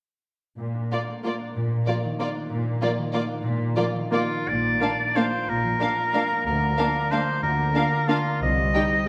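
Bathed in a wet scoring-stage reverb, this sweeping, festive orchestral ballroom waltz in a rubato 3/4 opens at 0.6 s with ringing, thumb-plucked concert harp arpeggios over a dark cello section bass, as lush violin sections carry a smooth vibrato melody and a soft-attack second line above an expressive viola section accompaniment with portamento, before a clear, up-front oboe adds its own second line from 4.1 s and a rich double bass section deepens the bass from 4.5 s.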